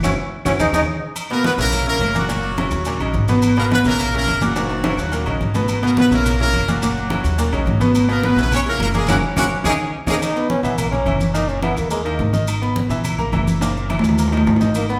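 A straight 4/4 groove of damped congas, woody claves, grainy maracas and ringing timbales and agogo bells drives this fiery salsa passage, where a thumpy gut-string upright bass plays pizzicato beneath a bright, up-front concert grand piano with audible action noise, a punchy, brilliant horn section carries the melody from 1.3 to 10.2 seconds, and a distant trombone with light vibrato opens the passage and takes the lead again from 10.2 seconds, amid band accents and drum fills in a reverberant recital hall.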